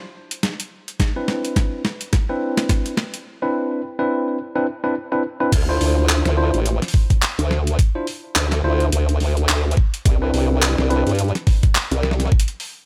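A swung sixteenth-note groove in 4/4 drives this gritty, playful glitch hop excerpt. It opens with a fill on a compressed, pitched-down, sampler-style kit of crash, handclaps, hi-hat and medium-tuned snare, joined at 1.0 seconds by a layered, knocking electronic kick, while a clean tine electric piano heard through a combo amp plays stabs over Cmaj9, shaped by sidechain pumping, a low-pass filter and delay. At the drop at 5.5 seconds a detuned, formant-filtered wobble bass arrives with chorus and tube saturation as the harmony moves to Dm9 and then back to Cmaj9, within a digital ambience.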